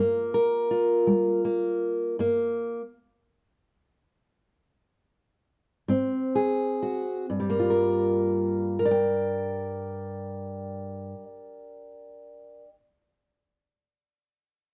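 Slow, mournful blues with a straight 12/8 feel, carried by a lone fingerpicked steel-string acoustic guitar. Dark and up front, it has audible finger squeaks as it moves from Gm7 to Gm and then to Ab7. The tempo slows from the opening, and the music stops from 2.2 to 5.9 seconds before the guitar settles back onto Gm7 at 7.3 seconds. The soulful fragment sits in moderate studio reverb, colored by worn, warbling cassette tape with a wavering pitch drift.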